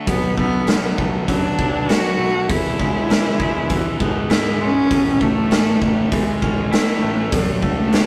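A straight 4/4 pulse at 99 BPM drives this short cut from a longer quiet-loud alternative rock piece in B dorian, its mood dark and cathartic. A raw garage drum kit sits up front with a punchy kick, a medium-tuned snare and hi-hat, sounding gritty and saturated in a pumping stone room with a rolled-off top. Over it, a single bowed cello carries the melody with vibrato, its tone nasal, focused and boxy. Further back, a thick fuzz guitar grinds out a distorted riff while a twangy, clean electric guitar picks arpeggios, and a round, overdriven fuzz bass holds the low end. The harmony moves from Bm7 to E, A and D/A across the 8.1 seconds, all captured as a rough rehearsal-room recording with tube saturation and light reverb.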